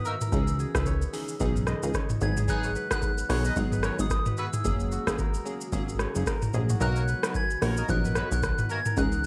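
This brief cut from a longer afrobeats piece has the dry, close sound of a home cassette recording, with little reverb around it. A booming analog drum machine sits up front with a deep kick, metallic hats, rim click, shaker and toms over a swung sixteenth-note feel, and the kick drops out briefly from 6.8 to 7.3 seconds. A punchy, funky analog bass is just as prominent, while glassy digital keys with chorus enter at 0.3 seconds as accompaniment over a C#madd9, G#m7, F#add9 and Bmaj7 progression. Above them a soft struck synth lead carries the melody in a round, gentle, keys-like tone, and a warm, roomy horn section with light vibrato adds a second line. Deeper in the background, a crisp fingerpicked kora rings out a riff and a very quiet ethereal pad holds sustained chords, giving the piece a hypnotic, sultry mood.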